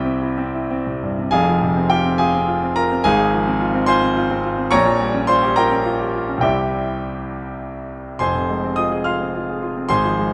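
Classical virtuoso piano study in F minor, passionate and stormy, moving at 70 BPM in 6/8 with a flexible, rubato feel. A solo grand piano carries the whole fragment, ranging from deep F1 up to bright F6, its tone warm, polished and placed up front with a present, close-miked detail. After a brief opening on a C chord, the music settles into F minor at 1.3 seconds and unfolds through Fm/Ab and Gm7b5/Bb before returning to C and resolving back to Fm at 8.2 seconds. Light reverb adds a touch of space around the instrument while keeping every note clear. The short excerpt, cut from a longer piece, captures a stormy, dramatic moment of the study.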